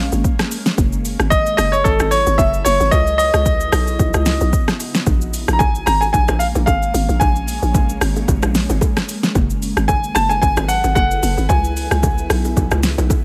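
Amapiano at 112 BPM in 4/4, with a light 16th-note swing, this late-night, hypnotic cut from a longer piece moves through Bbm7, Gbm11 and Dbm11 chords. A clear concert grand piano carries the melody up front, its intimate, polished tone showing audible action noise and long sustain, with tape echo trailing its phrases. Beneath it, a hollow log drum bass sits forward in the mix, bouncy and percussive with a fast attack and a decaying tail. A deep house drum kit of kick, snare, rim click, hi-hat and shaker adds an overdriven, layered punch, pairing a deep kick and fat snare with metallic hats. Far back, an ethereal, detuned pad holds sustained chords with slow attack and long release, shimmering through ensemble chorus, phaser and its own reverb. At 5.1 seconds, ringing congas and bongos join in the background, giving the groove a small-room acoustic texture within a digital ambience.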